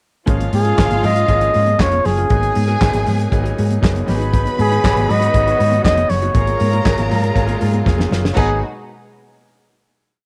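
Disco at 119 BPM in G# dorian, this short, glamorous and driving piece runs a pre-chorus over A#m7/G#, G#m7, C#9sus4/G# and F#maj9/G# before landing on a final G#m7 chord at 8.4 seconds. A soul drum kit with a fat snare layered with handclaps, a tight kick and dark cymbals pumps out a four-on-the-floor beat with open hats on the off-beats, while a round, dark hollow-body bass plays up-front octave lines. A clear grand piano adds syncopated rootless chord stabs with grace notes, a very quiet, twangy, slightly broken-up electric guitar chops sixteenth-note figures, and faint high-tuned congas with a thin, damped skin keep a syncopated groove. A smooth-topped, punchy flugelhorn leads with hook phrases from 0.5 seconds, and a lush violin section with expressive vibrato plays fast runs into held notes as a second line. A focused, distant string section slips in at 4.3 seconds with a sustained pad in the background, and a drum fill at 7.9 seconds sets up the closing chord, all within a generous studio reverb.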